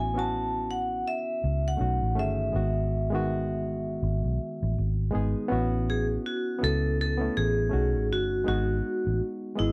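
A relaxed 16th-note swing at 81 BPM in 4/4 carries this smooth R&B excerpt in E major, cut from a longer piece and running just under 10 seconds. Up front, a vibraphone struck with hard mallets sings the melody in a metallic, ringing voice, its medium motor vibrato set in a boxy small room. Beneath it, a barky reed electric piano supplies reedy, bright accompaniment, lightly overdriven and heard through its built-in speakers. A vintage fingered electric bass, foam-muted and round, holds down the low end with a dark, amped tone, sitting slightly louder than the other two parts. The harmony moves through A6, B9 and Emaj9/G#, then repeats that progression when a new section begins at 5.5 seconds, closing on a rootless Emaj9/G#. The sound is dry and close, like a 1970s studio session with little reverb.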